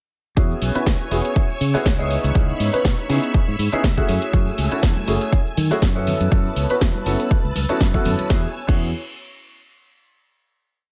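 Feel-good and funky, this short filtered disco house piece pumps along on a punchy four-on-the-floor electronic kick and a house drum kit of cracking snare, hi-hat, cabasa and crash. A growly fingered electric bass plays a syncopated line beneath a dark, worn grand piano with audible action noise and 12-bit sampler grit playing dotted-rhythm chords up front, while a swirling phased string machine holds sustained chords. Tambourine and congas join in the background at 4.3 seconds before the drop resolves to a final chord at 8.3 seconds.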